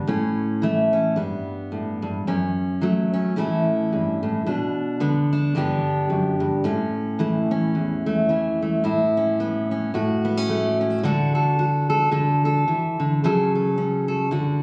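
Caught on a phone in a club-like room with light reverb and compression, this nostalgic, hopeful folk fragment cut from a longer piece features a dark, full-bodied fingerpicked dreadnought steel-string acoustic guitar played solo and up front at 110 BPM in a swung 4/4, ranging from E2 to A4 in A mixolydian, tuned to A4 = 437 Hz, with audible finger squeak as its opening chords of A, Gadd9 and F#m give way at 8.8 seconds to a second passage built on Aadd9, D and Dsus2 before it breaks off at 14.6 seconds.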